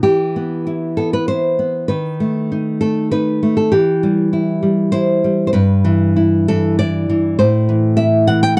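Passionate and wistful, this brief romantic excerpt for solo classical guitar moves in a rubato 3/4 around 98 BPM in E minor, its full-bodied, fingerpicked nylon strings sitting up front in a dry, close 1970s-style studio sound with light reverb as the harmony passes from Em through B7/D# and Em/G to Am across its 8.6 seconds.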